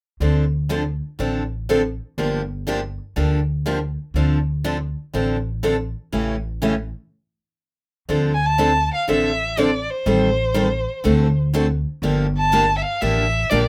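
A rich, bowed violin enters at 8.3 seconds with an expressive, up-front melody full of vibrato and portamento, riding a fiery, swinging acoustic string swing groove in D minor at 122 BPM. Before it arrives, a bright, picked steel-string acoustic guitar with fresh strings and audible finger squeak carries the accompaniment alongside a woody, thumpy pizzicato upright bass on gut strings, and the band breaks for a stop at 7.1 seconds. Light reverb surrounds this short, swinging cut from a longer piece, whose chords move from Dm7 through Gm7 and A7 before turning to Am7b5 and D7.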